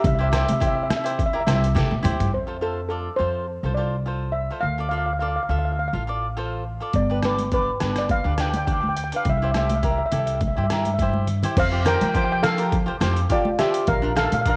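Calypso at 104 BPM in F major, bouncy and festive, heard in a short section cut from a longer piece. A shimmering steel pan, played with hard rubber sticks and sitting up front, carries the melody with a dark, smooth metallic tone colored by cassette tape and tape echo. Beneath it, a woody, thumpy upright bass is plucked with steel strings, while a crisp picked cavaquinho joins at 0.2 seconds to fill in the chords. A gritty, pitched-down sampler-style drum kit with an overdriven, compressed sound and a thumpy kick drops out after a fill at 2.3 seconds and returns at 6.9 seconds. Damped, high-tuned congas played with soft hands sit close and dry in the background, and the whole piece has the light reverb and small-room feel of a home cassette recording.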